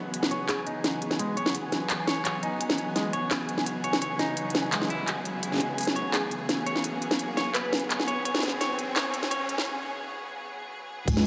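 A clanging industrial drum kit with crisp hats, handclaps and crash drives this dark, heavy half-time drum and bass build-up at 170 BPM in C# minor, as a lush, bright bowed string section holds sustained chords under a filter sweep and sidechain pumping, a clean semi-hollow electric guitar plays filtered arpeggios through tape echo, a flickering grainy texture and a background riser and sub drop add tension, a very quiet glassy wavetable pluck briefly surfaces near the start and again around 6.1 seconds, and after a break at 9.7 seconds a tight electronic kick and a deep, chorused wobble bass land together at 11.1 seconds, the whole piece set in a huge ambient reverb.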